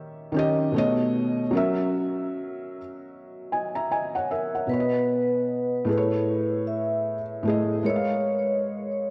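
Soaked in a lush hall reverb, this dreamy, cosy hip hop fragment, cut from a longer piece, moves with a relaxed sixteenth-note swing. A felt-muted upright piano sits up front with a soft, intimate, dark tone, audible action noise and the colour of cassette tape as it carries the chords throughout. At 4.7 seconds a vibraphone played with medium mallets enters with a smooth, metallic ringing melody, its slow motor vibrato trailed by tape echo.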